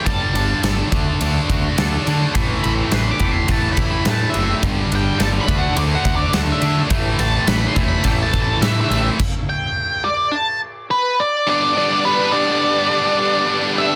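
A straight 4/4 pulse at 105 BPM drives this angsty, brooding stretch of quiet-loud alternative rock, with a huge arena drum kit up front pounding out punchy kick, a medium-tuned snare, crash and ride cymbals in a big room sound. A growling, overdriven picked bass and a tight, bright distorted guitar riff anchor the cycle of Gsus2, D and Amadd9, while a crunchy overdriven guitar joins the riff from the background at 2.3 seconds and a very quiet, twangy clean guitar traces arpeggios underneath. Over the top, a dark octave-fuzz lead guitar carries the melody as a solo. At 9.2 seconds the band drops out into a stop, leaving the fuzz lead and the distorted riff guitar hanging over the silence. At 11.5 seconds a vintage string machine with cello tones fades in on a Gadd9 chord, its sustained, warbling sawtooth sound thickened by ensemble chorus. The mix is dry, dense and heavily limited, and the passage is cut from a longer piece.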